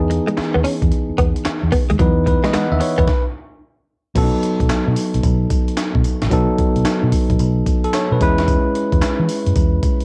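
Swung sixteenths drive this bouncy, confident new jack swing fragment in 4/4, led by a compressed, pitched-up breakbeat kit up front: a thumpy kick, high-tuned snare, hi-hat, handclaps, tambourine and crash, gritty and re-recorded in a large room. A bright, bell-like tine electric piano with cassette-tape color carries the chords alongside a dark, round, foam-muted fingered bass. A clean guitar riff, recorded direct and thickened by ensemble chorus and tape, plays only from 0.1 to 3.0 seconds, and after a stop at 3.1 seconds a new section begins at 4.2 seconds, all captured as a dry home cassette recording cut from a longer piece.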